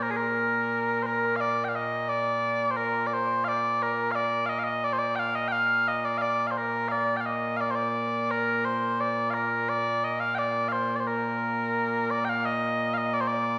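Ceremonial and stirring, this short excerpt of Scottish traditional pipe music moves in a straight two-beat metre, carried entirely by a solo set of small bagpipes heard up front. Their tone is mellow and sweet, a continuous sound with vibrato that spans from the low register up into the high, before a new section begins at 12.5 seconds. A wet recital-hall reverb, like that of a church or concert hall, lends the solo line a lingering, resonant bloom.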